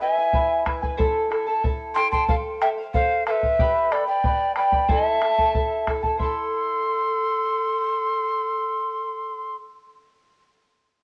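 A home cassette recording bathed in moderate spring reverb carries this festive yet melancholic Andean folk passage in 2/4, where a bright, airy wooden quena with vibrato and a crisp, chiffy attack leads the melody up front, a soft-attacked bamboo pan flute with straight, expressive tone and a tape-tinged character plays the second line, a fingerpicked charango shimmers on its double strings with some octave doubling, and a deep, dark bombo sounds from 0.3 to 6.5 s.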